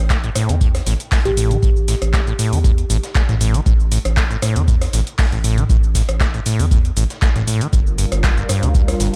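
A lightly swung acid house groove rides an overdriven, deep electronic kick. Around it sit a booming analog drum machine with metallic hats, handclaps, rim clicks, toms and cabasa, and a gritty, high-passed sampler kit of snare, hi-hat and tambourine set far in the background. A round, dark analog bass and a squelchy, resonant, tube-saturated sawtooth acid riff pump under sidechain for a trippy, gritty mood, while a single woody kalimba note rings through tape echo at 1.3 seconds. At 7.7 seconds a lush, detuned unison pad with chorus and phaser arrives on the closing chord of this short, dry excerpt from a longer piece.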